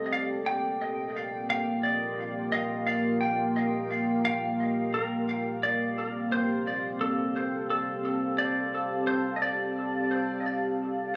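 Ambient fragment with a deep, hazy mood and a light swing, where a clean, twangy slide lap steel guitar carries the melody through dub echo over a dark, detuned sawtooth pad whose chorused chords on Gm7 and D7sus4 linger until 11.2 seconds after the guitar stops at 10.4, all set in an echo-heavy mix with plate reverb and a small-room ambience.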